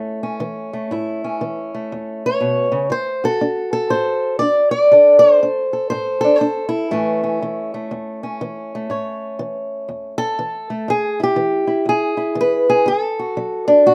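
Rollicking and swaggering, this short acoustic country blues cut in A major moves at 120 BPM in 4/4 with swung eighth notes. A single fingerpicked old ladder-braced acoustic guitar carries it alone, sitting up front with a dark, woody, boxy tone from its old strings, and it moves from A to D, then A again, with a break in the harmony at 10.9 seconds before landing back on D. Recorded outdoors, the sound is dry and close, with little reverb around the guitar.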